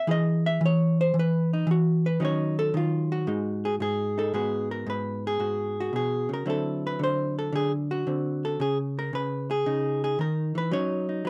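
Swinging and cool, this short solo jazz piece, cut from a longer work, features a lone clean, picked hollow-body electric guitar placed up front in a dark, warm production with light reverb. The guitar carries the whole performance, moving through chords such as E, D#m9b5, G#m7, D9 and C#sus2 across a range from G#2 to E5. A new section begins at 4.3 seconds, where the harmony settles into its minor centre before closing on F#5 at 10.7 seconds.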